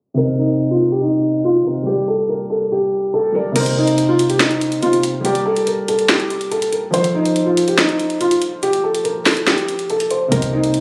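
Trap-flavoured hip hop at 142 BPM in a half-time feel, this eerie, brooding fragment is cut from a longer piece. A dark concert grand piano lays down the chords from the first moment, its mellow, vintage tone carrying deep bass and audible action noise, while a felt-muted upright piano carries the melody up front with a soft, intimate, muted sound of thick felt and a digital delay. The harmony moves from Cm7 to Gm, then back through Cm7 and Gm before landing on F, and a filter sweep shapes the opening stretch. At 3.6 seconds a trap drum kit arrives with a sharp snare, metallic hi-hats and crash cymbal, electronic and produced, sitting close in the mix while the kick stays muted until 10.3 seconds. A short, punchy 808-style bass drops in on a low C at that same point, its sine tone edged with a noise layer and a fast attack that then decays. The whole thing sits in a lush hall reverb with studio ambience, yet sounds as if captured on a phone in the room, with club reverb and a low-pass filter dulling the top end.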